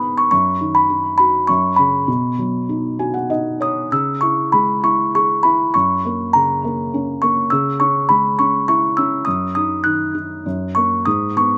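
A delicate, tinkling music box carries the melody up front, its plucked tones slightly out of tune and vintage in character, with a slapback echo trailing each note. Beneath it, a felt-muted upright piano plays soft, dark, intimate accompaniment throughout, adding a brief fill from 2.7 to 3.9 seconds before the second section begins. This gentle, innocent children's lullaby moves in a rubato 3/4 at 101 BPM in a dry, close sound, and is cut from a longer piece.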